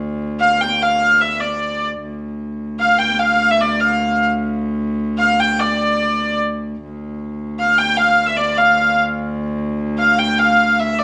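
Set in a moderately reverberant large studio where two players perform live together, this mysterious, driving medieval piece in D minor moves in 6/8 at 100 BPM, as a viola da gamba sustains a low D drone with a ringing gut-string tone and light vibrato from the start, and an up-front, nasal, reedy hurdy-gurdy enters at 0.4 seconds with a high melody carried on an airy bow.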